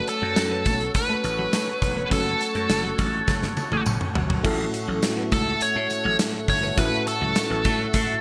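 Glossy and romantic, this short cut of 1980s-style pop moves at 103 BPM in A major, with an up-front, overdriven lead guitar carrying a biting melody over a gated drum kit with a punchy kick and bright cymbals, a growly slap bass, and a very quiet, twangy twelve-string electric guitar riff. A glassy FM electric piano with a bell-like attack and chorus supplies the accompaniment, while a swirling, detuned sawtooth pad with phaser and chorus holds sustained chords high above, and a jingly tambourine sits in the background. A drum fill from 3.3 to 4.4 seconds leads into the second section, all framed by moderate plate reverb and a bright digital sheen.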